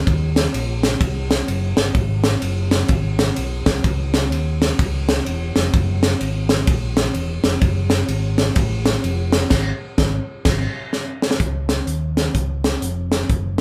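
A live band shares one moderately ambient studio room, with the drums up front and polished. This uplifting, jubilant slice of uptempo gospel, cut from a longer piece, swings its eighth notes in 4/4. A fingered electric bass carries the low end in a dark, round, amped tone. A crisp fusion drum kit joins at 0.1 seconds with an airy studio-room character, a high-tuned snare and a punchy kick, alongside hi-hat, ride and crash cymbals. At 9.5 seconds the band hits a run of accents, and a drum fill at 10.9 seconds carries them into a new section that closes the passage.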